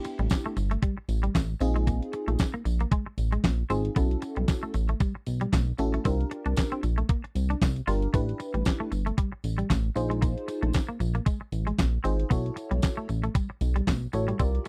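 Danceable, funky early-eighties boogie funk at 115 BPM with a swung sixteenth feel, built on a thumpy, tape-warm 8-bit drum machine with handclaps, a glossy, nasal chorused synth bass up front, a twangy, clean picked guitar riff entering at 0.1 seconds, a lush, dreamy FM electric piano with a soft pad layer under chorus and phaser, and a jingly tambourine in the background, all cycling through sus4 ninth chords that climb from A9sus4 to C9sus4 in a dry, close studio sound.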